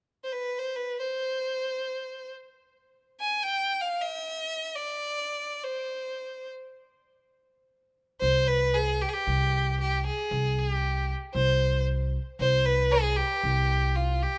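A rough home demo mix with light reverb and a small-room ambience frames this festive, stately fragment of an Arabic maqam ensemble piece. A single bowed violin, up front and clear with smooth vibrato, carries the melody from the start. At 8.2 seconds a plucked upright bass with woody, thumpy gut strings joins it on a low, dark foundation, and it plays until 14.2 seconds.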